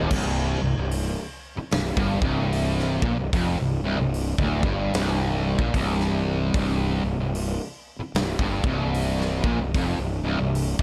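A double-tracked fuzz guitar stands out at the front, grinding out a low, picked riff between C2 and Bb2 with a compressed, distorted edge over a C5 power chord. This short stoner and doom metal excerpt moves at a slow 75 BPM in 4/4, with a swung eighth-note feel that gives its ominous, heavy mood a loping sway. A fingered electric bass holds down the low end from C1 to Bb1, its tone growly and overdriven through tube saturation, captured direct and amped and placed up front. A big acoustic rock kit sounds natural in a large room, with a punchy kick, a medium-tuned snare, hi-hat, and bright crash cymbals. The guitar and bass start at 0.0 seconds and the drums join at 0.1 seconds, and all three play through to about 10.8 seconds. The mix is dry, with little reverb, so the fuzz-laden riff hits close and thick.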